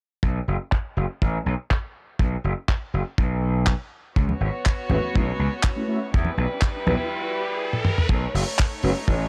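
A gritty, overdriven slap bass punches up front through this sunny, groovy nu-disco excerpt beside a dry, tight kick and a dark, damped 70s kit of handclaps, hi-hat and toms under a filter sweep. A reedy chamber violin section with gut-string tone and sidechain pumping enters at 4.2 seconds, with soft-handed congas joining in the background just after. Mellow detuned synth brass with chorus, phaser and tape echo follows at 4.9 seconds, and an electronic riser builds alongside a drum fill ending at 8.1 seconds, the whole take carrying a cassette-tape character in a small room.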